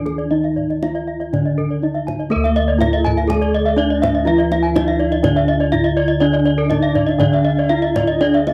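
This is a short, shimmering and brilliant cut of Balinese gamelan from a home cassette recording, set in a moderate studio ambience. Four bronze metallophones carry the melody, an accompaniment and two arpeggio lines. Among them, one struck with a wooden mallet sounds close-miked, dry and full, while another sits in the background. Two played with horn mallets contrast a bright edge against a dark, smooth tone, and most of these bronze keys carry the ringing beats of paired tuning. One arpeggio line has a plate reverb. Bossed gongs, round and mellow under padded beaters, sit up front on the bass, and a deep kendang drum adds percussion with the sound of a live room. The opening section gives way to a second at 2.3 seconds, and at 2.9 seconds a breathy, mellow bamboo bansuri enters softly in the background with a second line, tongued and coloured by vibrato, with rolled-off highs and plate reverb.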